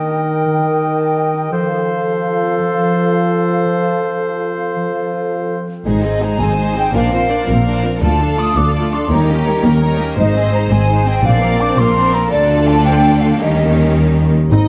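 This cinematic excerpt in 6/8 opens with a hollow, airy flute group, a punchy clarinet, a distant oboe, mellow French horn chords and ringing, very quiet harp arpeggios building up together, before lush bowed violas, cellos and portamento double basses enter at 5.9 seconds and a focused violin melody enters at 6.4 seconds over a second violin line, all soaring and triumphant in a dark, reverberant scoring-stage space.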